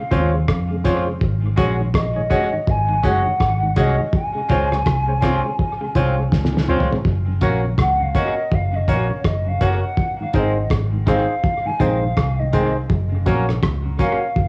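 Sunny and laid-back, this roots reggae passage from a longer piece moves at 82 BPM in 4/4 with a swung sixteenth-note feel, moving from Dbmaj7 and Ab7sus4 to Gb and Ab chords. A distant, hollow silver concert flute carries the melody with vibrato and a crisp attack, trailed by dub echo and plate reverb, and it takes a solo from 7.1 seconds onward. Underneath, a dark, foam-muted fingered electric bass sits round and prominent with transformer saturation, while a cloth-damped drum kit sounds muffled and gritty, with a fat snare, tight kick, rim clicks, hi-hat and toms, plus analog delay and a fill at 6.3 seconds. A twangy, picked clean electric guitar with subtle chorus and dub echo, percussive sine-and-triangle organ stabs with fast, decaying attacks, and a round tonewheel organ in the background turning through a slow rotary speaker with chorus vibrato fill out the accompaniment. The whole mix has the lo-fi character of a cassette home recording in a small room, with a touch of studio reverb.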